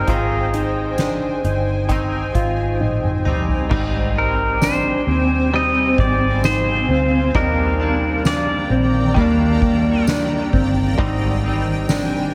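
Dreamy and floating, this dream pop excerpt drifts at 66 BPM in Ab lydian, with a bright, twangy pedal steel guitar singing the melody until 10.0 seconds over a clean electric guitar colored by tremolo and analog chorus, a dark, fingered electric guitar tracing arpeggios through tape echo, a cloudy, evolving granular pad, a round, foam-muted bass, a very quiet ringing vibraphone, and a soft-mallet drum kit with a fat snare and punchy kick that plays a fill from 2.8 seconds. Later, the harmony moves from Abmaj7 to Ebmaj7 and back.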